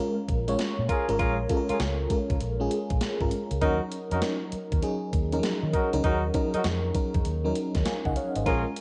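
A phaser-washed FM electric piano with tremolo opens this punchy, bouncy new jack swing excerpt, its fast-attack, decaying tones carrying a faint noise layer and cassette tape coloring. From 0.3 seconds, a thumpy 12-bit drum machine with kick, medium-tuned snare and hi-hat, re-recorded in a large room, drives a swung sixteenth feel beside a dark, foam-muted fingered electric bass with a round, amped tone. A mellow, jazz-style horn section adds vibrato-tinged stabs from 0.9 seconds, and the home cassette recording sits in light reverb as the harmony moves from Bbm7 to Ebm7.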